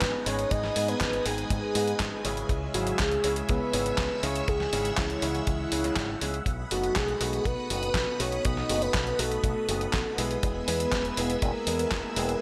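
This italo disco excerpt, cut from a longer piece, moves in a straight 4/4 with a melodramatic, nostalgic mood, passing through G#m, C#m, B7 and E. A soft octave-layered synth lead carries the melody, its round, full-bodied tone coloured by chorus, phaser, vibrato, a vintage 12-bit sampler grit and digital delay. Beneath it a phased string machine holds swirling sawtooth chords with slow attack and long release, while a boxy baby grand piano adds stabs. A fingered electric bass, bright and direct through an envelope filter, anchors the low end. The beat pairs a detuned 8-bit digital drum machine, sampler-style and up front with handclaps, hi-hat and snare drum treated with studio and gated reverb, with a dry, tight kick drum that stops at 12.0 seconds, all set in a light reverb.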